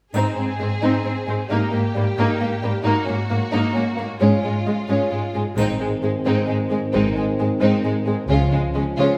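A rich, focused violin section carries the soaring melody of this heroic, adventurous film-score excerpt in Ab major at 132 BPM in 3/4, over a smooth second violin line, even violas and a close, up-front cello bass with touches of background triangle, before mellow French horn chords and a distant double bass section with expressive portamento join at 5.6 s for a build-up, the lush strings set in a reverberant recital hall with faint mains hum.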